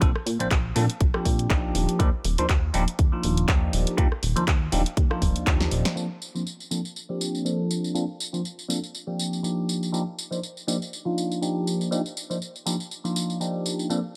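Sunny and funky, this filtered disco house cut moves with a gently swung sixteenth-note feel and is lifted from a longer piece. A bell-like tine electric piano sits up front through the whole passage, its clean, direct chords treated with phaser, sidechain pumping and a low-pass filter, and from 6.0 seconds it carries a filter sweep. Beneath it, a plucky analog bass with tube saturation and wave-folded, sawtooth-edged tone gives a fast-attack, decaying, mellow bounce, pumping against the beat until it drops out at 5.8 seconds. A punchy electronic kick drives the opening before stopping at 5.6 seconds, where a short drum fill leads into the second section. The house kit of handclaps, rim click, punchy snare, tambourine and bright hi-hats keeps going throughout, with its hats and percussion pumping to the sidechain, all set in a digital ambience.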